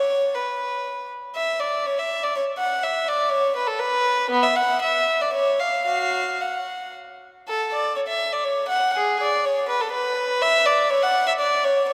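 In a flexible, rubato triple metre moving at roughly 110 to 126 BPM, this short excerpt from a baroque-style suite movement for unaccompanied violin has a radiant, dance-like lilt. A single violinist plays alone from start to finish, spanning the range from B3 up to F#5 across the 11.9 seconds. The gut-string tone is nasal and reedy with an airy bow, played in period style and captured close and up front. The opening phrase returns at 7.5 seconds, giving the fragment a sense of repetition within its brief span. A wet church reverb with a long 3.3-second decay surrounds the instrument, lending the resonant space a glowing halo behind the intimate, present sound of the strings.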